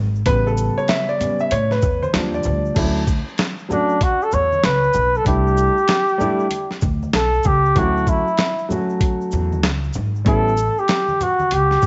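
Cool, warm jazz-hop at 96 BPM in D major: a swung 4/4 groove cut from a longer piece, built on a gritty, pitched-down, compressed and tape-warm boom bap sampler-style drum kit with a thumpy kick and a medium-tuned snare, alongside a woody pizzicato upright bass on gut strings. A dark, smooth grand piano with long sustain takes the opening solo spotlight from 0.3 seconds, while bright egg shaker and congas, played with soft hands, sit in the background. At 3.7 seconds a mellow flugelhorn with vibrato enters up front yet sounding distant, carrying the jazz-style solo melody through a moderate echo-chamber reverb and small-room ambience that keeps the top end rounded.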